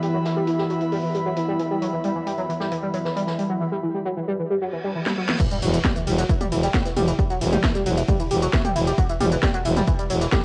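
This intense, hypnotic slice of driving peak-time techno opens on a gritty, screaming synth lead riff with phaser and tube saturation, laid over a nasal analog drone, an airy, breathy pad and a distant acoustic big-band kit ticking hi-hat and snare in the background, all heard through a small, wet booth on cassette. The drone and pad fall away at 3.6 seconds, a reverse cymbal and sub drop enter at 4.7 seconds, and a techno kit with a cracking snare and smooth hats comes in with a fill at 5.1 seconds. At 5.4 seconds the drop lands with a punchy, tape-warm electronic kick, and at 5.6 seconds a growling, thick FM bass joins, pumping against it up front beneath the lead.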